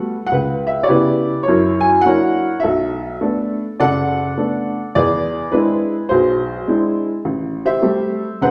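A swung 4/4 feel at 104 BPM carries this relaxed, warm solo jazz fragment, cut from a longer piece, in which a lone woody, boxy upright piano tuned to A4 = 438 Hz ranges from E1 to Ab5 through C#m7b5, F#7b13, Bm7, E7b13 and Am7, wrapped in a wet large-studio reverb heard from further back in the room.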